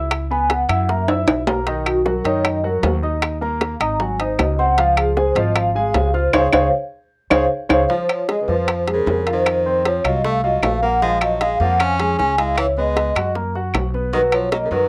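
Heard through a home cassette recording with light reverb, this lively, danceable Afro-Cuban jazz excerpt in Db major moves at 154 BPM in straight 4/4. Soft-mallet vibraphone carries the melody with a mellow, dark tone and fast motor vibrato, soloing through the opening 7.9 seconds over polished grand piano chords, a woody pizzicato upright bass, ringing metal-shell timbales up front, and tight, high-tuned bongos and claves in the background. A brief drum fill appears early on, and another drum fill along with a band accent marks the end of that passage. At 7.9 seconds a bright tenor saxophone enters on a second line as the harmony moves through chords such as F7 and Bbm7.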